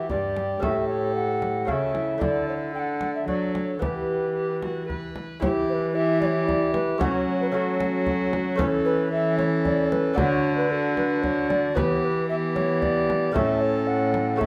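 Solemn and rustic, this renaissance-style consort dance in triple time sets a hollow, chiffy alto recorder melody over a reedy gut-string viola second line, a mellow trombone and a bright, fingerpicked lute with double strings in the background, while a nasal bowed cello anchors the bass and a deep frame drum struck with hard hands joins at 0.1 seconds, all in a moderate studio reverb.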